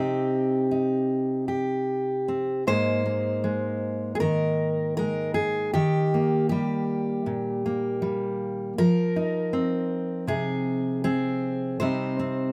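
At 79 BPM in a straight 4/4, this short cut from a longer folk piece moves at an unhurried, steady walk. A single fingerpicked steel-string acoustic guitar plays alone throughout, its dreadnought body giving a warm, full-bodied tone that sits up front. Small touches of finger squeak add to the intimate, wistful feeling. The harmony opens on C minor, shifts to Abadd9 at 2.7 seconds, and passes through Eb and Fm7 before settling back on C minor at 11.8 seconds. The part spans from Ab2 up to C5, and a moderate small-room reverb lends a modest sense of space around the guitar.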